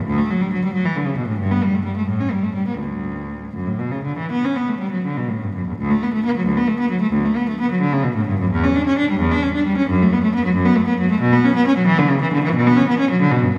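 Radiant and serene, this brief excerpt from a baroque-style suite movement for unaccompanied cello unfolds in D major in a rubato 12/8 at roughly 78-92 BPM, tuned to A4 = 435 Hz, with a single bowed cello sitting up front, its focused tone rich with vibrato and a smooth top, ranging from D2 to D4 through an opening passage and a second section from 5.8 seconds, all wrapped in a long, wet church reverb.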